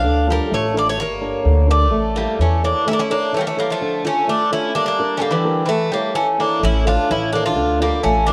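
Heard through worn, warbling cassette tape with pitch drift and a moderate plate reverb, this tense, intense Greek folk excerpt moves at 128 BPM in a straight 2/4, cycling through Dm, Gm and A. An up-front, bright, metallic bouzouki carries the melody over a second, warm bouzouki line, both double-strung with some octave-doubled strings, while a dark, boxy flamenco guitar adds thumb-plucked accompaniment. A woody, growly upright bass thumps pizzicato up front, dropping out at 2.7 seconds and returning at 6.6 seconds.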